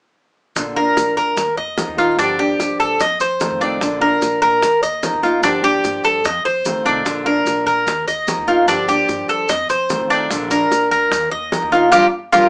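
Cuban son in a guajira vein, danceable and warm, this excerpt from a longer piece sets a bright, metallic tres up front, its picked double strings spinning arpeggios over a thumb-plucked classical nylon-string guitar and a woody, thumpy upright bass that sits dark in the background. Round, low-tuned bongos and grainy, mellow maracas keep the pulse through a cycling progression of Bb, Ebsus2, Gm7 and F7. The band lands a shared accent at 11.9 seconds, all heard through moderate studio reverb with a small-speaker character.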